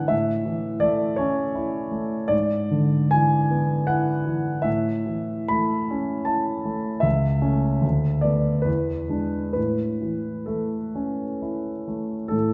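A polished grand piano sits up front and present, carrying this lyrical, hopeful romantic character piece alone in A major, in 3/4 with a flexible rubato feel that drifts between 64 and 84 BPM. Its harmony moves from A through E7/G#, returns home, then travels via A/C#, Bm7/D and E7 to settle on A at 9.6 seconds, spanning a range from C#2 to B5. A moderate concert hall reverb with a 2.1-second decay gives the 12.5-second passage, cut from a longer piece, a spacious, resonant setting.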